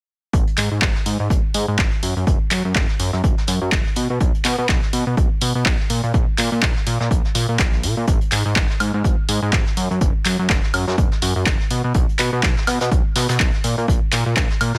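A swung 4/4 groove at 124 BPM drives this soulful, energetic piano house excerpt, built on a punchy, tape-warm electronic kick sitting up front alongside an analog drum machine of handclaps, hi-hat and woodblock that joins at 0.6 s. A fat, thick sawtooth bass, detuned and sustained with a fast attack and a filter sweep, pumps against the kick between F#1 and B2. In the background, a soft brush kit adds a medium-tuned snare and hi-hat with a rolled-off top, all in a dry mix with little reverb.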